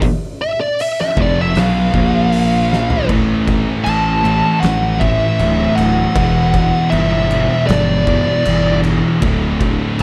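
Hypnotic and ominous, this stoner and doom metal passage, cut from a longer piece, crawls along at 78 BPM in a straight 4/4, tuned slightly flat with A4 at 438 Hz. An oversized, low-tuned acoustic drum kit pounds through the whole clip with a punchy kick, fat snare, dark cymbals, toms and hi-hat, its big pumping room sound saturated and gritty, and a drum fill arrives at 2.7 seconds to close the opening solo. A compressed, up-front fuzz lead guitar opens with that solo at 0.4 seconds and carries the melody between D5 and A5, its distortion trailed by a slapback echo, over chords moving from a rootless D7#9 to A#5. At 1.2 seconds the low end thickens as two dark, picked fuzz guitars and a bright, scooped, double-tracked high-gain guitar take up a riff in the background between D2 and B3, joined by a growly, punchy fingered electric bass, overdriven and fuzzed, down between D1 and B1. From 3.1 seconds the harmony settles through A5 and Em before landing on D5, with the lead dropping out at 8.8 seconds and the dry, reverb-light mix staying heavy and close.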